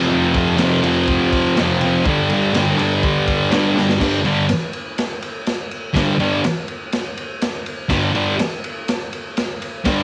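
Garage rock with a menacing, swaggering strut, this short cut from a longer piece opens on a thick, bright fuzz guitar riff, double-tracked and up front, moving between F5 and G5 power chords. A crunchy breakbeat drum kit joins at 0.3 seconds with a tight kick, medium-tuned snare, and dark crash and ride cymbals, its gritty, saturated sound carrying a cassette-tape coloring and a rolled-off top. A drum fill at 3.8 seconds leads into a new section at 4.0 seconds, and the dry home-cassette recording keeps both parts close and raw.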